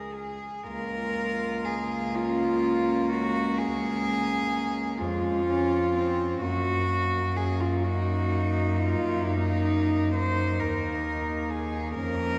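Cut from a longer lyrical classical piece for cello ensemble in Db major, this tender, rubato passage in 12/8 at a slow 38-46 BPM opens with three rich, pure, floating, bowed cellos played sul tasto (an up-front melody between Eb4 and C5, a distant second line beneath it, and a deep bass from Db2 to Gb2) before a clear, nasal, close-sounding cello joins at 0.7 s with a soft-attack accompaniment. All are heard from further back in a concert hall with wet reverb as the harmony moves from Db to Ebm/Gb at 6.4 s.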